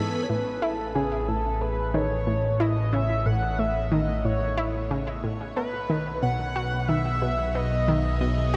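Mysterious and cosmic, this ambient, sequencer-driven space music excerpt moves at 91 BPM in 4/4, with a shimmering, nasal pulse-width lead carrying the melody over a round, wave-folded analog pluck riff, both trailing tape echo, while a swirling, phased string machine fades in from 0.3 s with sustained chords and a fat, saturated analog bass enters up front at the same moment, the harmony shifting from A to B6 at 5.6 s inside a dreamy mix soaked in a huge reverb.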